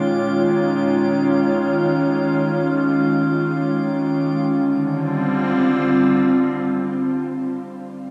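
Drenched in a wet spring reverb with a 2.6-second tail, this short reflective, melancholic ambient fragment floats in free time, tuned to A4 = 441 Hz. An evolving wavetable pad, bright, detuned and morphing, sits up front with chorus and shimmer reverb, holding slow-attack sustained chords that move from C#sus2 to Dm at 4.5 seconds and ring on until 7.6 seconds. Far quieter, a calm, glassy texture of drifting sine overtones shimmers in the higher register until it drops out at 4.5 seconds.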